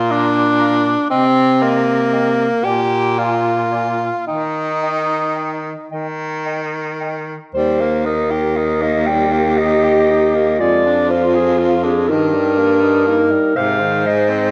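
In a slow, rubato 6/8 lilt of roughly 36-42 dotted-quarter beats per minute, this tender classical excerpt for single-reed quartet unfolds in Eb major, its harmony moving from Bb through Cm and Bb7 to a settled Eb at 4.3 s, then passing through Ddim/F and Eb/G to Ab at the close. A dark, distant clarinet carries the melody, joined by a mellow alto saxophone on a second line, while a clear tenor saxophone supplies accompaniment and a warm baritone saxophone anchors the bass; the three saxophones sing with vibrato, and the tenor and baritone sit up front. A moderate recital hall reverb lends the clarinet and baritone a roomy air, and the music turns to a new section at 7.5 s.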